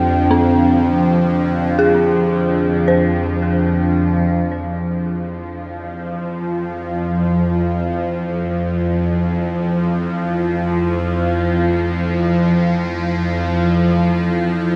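A tense, string-like bowed drone sits up front with phaser and vibrato, joined from the first moment by an eerie, inharmonic FM synth bell tracing arpeggios through chorus, tape echo and shimmer reverb, and a deep, moody analog pad holding sustained chords in the background, the whole dark, desolate ambient fragment set in a cavernous cathedral reverb as the harmony moves from Ab to F at 4.3 seconds and the bell falls away at 9.4 seconds.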